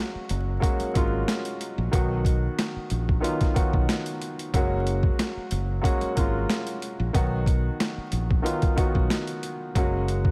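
A woody upright piano with audible action noise opens this boom-bap hip-hop excerpt, its intimate, cassette-tinged chords moving between F#add9 and B over a bed of vinyl crackle. A punchy fingered electric bass enters at 0.1 seconds, and a gritty, compressed, pitched-down sampler drum kit arrives at 0.3 seconds with a thumpy kick, high-tuned snare and hi-hat, sitting up front with a light swing. The mood is warm and confident, set in light reverb and digital ambience.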